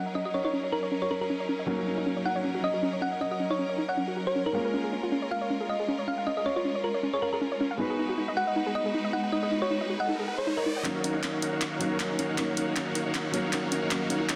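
This dreamy, emotional future bass piece at 157 BPM in Eb minor moves in a half-time feel with a light swing, opening on a tine-like, FM thumb-piano-style synth pluck carrying the melody through chorus and tape echo. Beneath it sit a felt-muted upright piano with audible action noise and dub echo, bright bowed string chords with vibrato, and a warbling, vintage pluck playing arpeggios under a filter sweep. A background riser enters at 8.8 s, and at 10.9 s the melody gives way to a huge, detuned supersaw riff under a sweeping low-pass filter, alongside an up-front, layered electronic dance kit with handclaps, hi-hat and a drum fill, all set in a lush hall reverb with a dense, heavily limited master.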